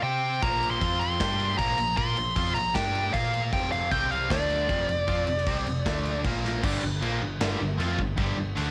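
Hard rock at 154 BPM, aggressive and heavy, where a dark, smooth overdriven lead guitar carries the melody up front with cassette tape grit and plate reverb until 6.2 seconds, over two bright, picked, overdriven stack guitars on the riff, a round, punchy hollow-body fingered bass, and a big-room acoustic kit with a punchy kick and bright cymbals entering at 0.4 seconds, before a drum fill at 6.4 seconds ushers in a double-tracked high-gain distorted guitar riff in the background from 6.6 seconds, all captured as a home cassette recording with light reverb.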